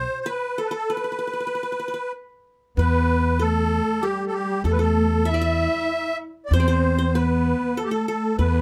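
A straight three-beat lilt carries this hypnotic, soulful passage for an Arabic maqam ensemble, cut from a longer piece. An up-front, reedy musette accordion with a shimmering, airy tuning sings the melody over a thumpy pizzicato upright bass on gut strings, while a bright-edged qanun plucked with fingerpicks adds a second line. After a break from 0.9 to 2.8 seconds, a single bowed cello enters with a dark, nasal, woody tone, vibrato and portamento, all caught by close, detailed microphones in light reverb.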